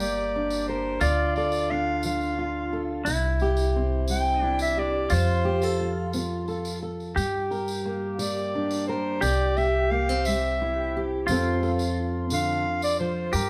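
A clear, lightly vibrato soprano saxophone carries a haunting, melancholic melody in a classical style, up front yet roomy, over a clean, compressed pedal steel guitar playing a second line with fingerpicked volume swells and slide, a fingerpicked steel-string acoustic guitar with audible finger squeak, a woody pizzicato upright bass and a distant, jingly tambourine, as this acoustic folk band plays live in 6/8 in a stone room with moderate reverb, cut from a longer piece.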